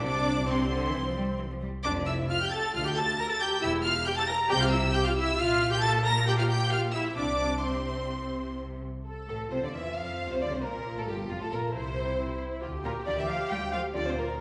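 A quick classical-period movement for string orchestra in F major at 134 BPM, graceful and cheerful with a rubato feel, cut from a longer piece and heard in a wet recital hall. An up-front first violin section carries the melody with a focused, lush tone and smooth top, while a softer, more distant second violin section adds an expressive line with portamento. Violas with light vibrato fill in the accompaniment, and close cellos and double basses anchor the bass throughout, with the music moving into a new section at 9.1 seconds.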